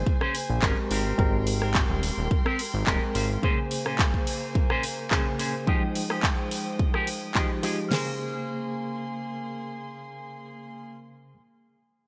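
A barky, lightly overdriven reed electric piano with fast tremolo provides the accompaniment in this sleek, sensual nu-disco excerpt, its sound pumping and delayed under a filter sweep that runs until 7.9 s. A twangy envelope-filtered guitar picks a bright riff with a short clean fill, while a distant, earthy chamber string section holds bowed chords with light vibrato. Up front, a punchy layered drum kit with a fat snare, crash, metallic hats, handclaps and rim clicks drives the groove, and a thick, detuned analog bass drops out at 3.4 s, all within a bright 1980s-style digital production.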